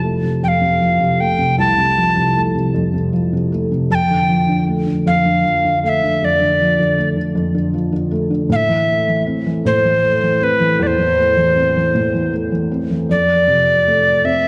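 An airy, close-miked alto recorder carries the melody from 0.4 seconds, its warm, wooden straight tone marked by a crisp attack and chiff, in this tender, romantic pop excerpt in 6/8. Beneath it, a felt-muted upright piano supplies mellow, intimate accompaniment in its low register, the thick felt and audible action noise lending a vintage, smooth character. Both parts sit up front within a dark production bathed in a wet concert hall reverb, drifting through F, Dm/F and Am before settling on F6 at 13.1 seconds.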